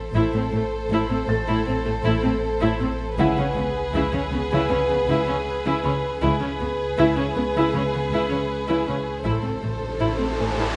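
Eerie and uneasy, this 79 BPM suspense film-score excerpt sets sul tasto chamber violins, one carrying an intimate vibrato melody and the other a second line, over an up-front viola accompaniment, a dark cello section and a floating double bass section in the background, with a deep, ominous rumbling drone, a soft felt-muted upright piano texture and a moderate scoring-stage reverb, as the harmony shifts between Am and C#m7 before an electronic riser enters at 9.7 seconds.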